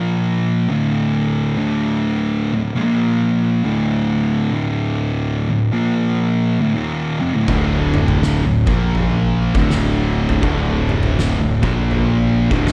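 Sludgy and hypnotic, this stoner and doom metal excerpt crawls at 81 BPM in a swung 4/4, circling between Bb5 and D5 power chords in D phrygian with a brief turn to D minor. Two thick fuzz guitars sit up front from the start, one dark and one warm, both picked and distorted. At 7.5 s a bright, overdriven, double-tracked guitar and a growly fuzz bass join in the background, while an oversized, low-tuned drum kit arrives up front with a boomy kick, fat snare and toms, sounding saturated and gritty in a pumping stone room, all within a small room ambience.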